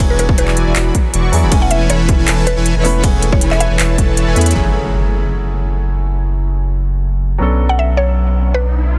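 Lush and bittersweet, this future bass passage in F# minor runs at 158 BPM with a half-time feel, opening on a drop where a hard-clipped electronic kick and a trap kit of handclaps, crisp hats and ride cymbal sit under a smooth, detuned supersaw riff, a clear grand piano and a woody, round synth pluck carrying the melody through chorus and dub echo. A deep, saturated sub bass sits up front throughout, pumping with sidechain like the piano, while the chords move from E7 through Amaj9/E to F#m9 and Bm9. After a drum fill at 4.4 seconds, the drums and supersaw fall away, an impact hits at 4.6 seconds, and a riser sounds in the background from 8.0 seconds, all within a dense, heavily limited master with little reverb.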